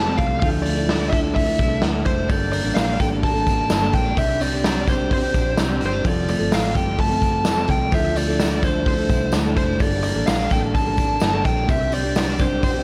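Wistful and bittersweet, this jangly indie pop excerpt in D minor moves at a straight 128 BPM, with a dark, fuzzy lead guitar carrying the melody over a fingerpicked, full-bodied plugged-in acoustic, bright, clean, twangy twelve-string electric arpeggios, a round foam-muted vintage bass and an up-front, gritty garage drum kit with a punchy kick, while a jingly tambourine sits in the background from 2.3 seconds as the chords cycle through Dmadd9, Gmadd9, Csus2 and Fadd9.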